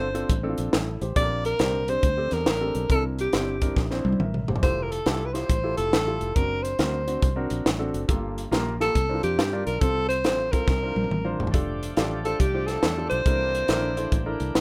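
A dry, rough home-demo sound frames this jubilant, uplifting uptempo gospel excerpt at 139 BPM in F major with a swung feel, where a breathy, intimate alto saxophone carries the melody up front with scooped notes over warm grand piano chords, a punchy fingered electric bass and a crisp fusion drum kit with a high-tuned snare that plays fills at 3.8 and 10.7 seconds, while a bright tonewheel organ with key click and a fast rotary speaker enters in the background at 11.5 seconds to hold sustained chords.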